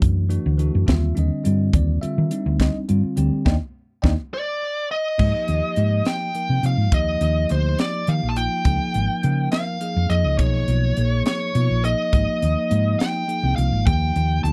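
Electric jazz fusion in a swaying 6/8, funky and slick, cut from a longer piece, with a bell-like tine electric piano under a phaser laying down lush major-ninth chords over a round, punchy hollow-body bass and a crisp, polished drum kit with a high-tuned snare and tight kick. A band accent begins at 3.5 seconds, and at 4.3 seconds, as a drum fill kicks in, a smooth, dark, overdriven lead guitar enters to carry the melody while the harmony opens into a new section at 5.2 seconds. The sound is dry and close, like a 1970s studio recording, with bass, drums and guitar up front.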